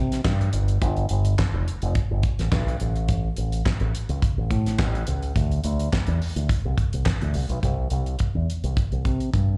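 This disco cut, taken from a longer piece, moves at 106 BPM in a straight 4/4 and carries a glamorous, celebratory mood. A fingered electric bass runs through an envelope filter, sounding bright, direct and punchy as it sits up front across the range from F1 to C3. Beside it, a damped 70s acoustic drum kit with kick, snare, hi-hat and handclaps comes across dry and mid-forward, with a fat snare, a tight kick and a rolled-off top, also placed up front. The performance is a live gig heard through the venue's PA, giving it the feel of a club room. The arrangement shifts into a new section at 7.6 seconds, and the groove runs until the bass stops at 9.6 seconds.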